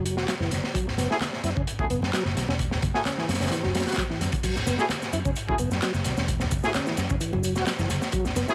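A crunchy breakbeat drum kit sits up front in this gritty, funky breakbeat cut, its tight kick, high-tuned snare and dark cymbals saturated and rolled off at the top, with hi-hat and crash riding through at 130 BPM in a straight 4/4. Beneath it, a picked electric bass plays a round, foam-muted line from the start, while a tonewheel organ carries the riff with key click, light overdrive, chorus vibrato, a slow rotary speaker, tube saturation and delay, all around an F#7(no3) chord in F# minor. Very quiet congas with soft hands and a thin skin join almost at once, alongside layered electronic handclaps and shaker that sound re-recorded in a small room. At 1.1 seconds a mellow brass ensemble begins tight stabs with light vibrato, roughened by vintage 12-bit sampler grit and delay. A drop arrives at 4.4 seconds for the second half of this fragment from a longer piece, all wrapped in small room ambience and a layer of vinyl crackle.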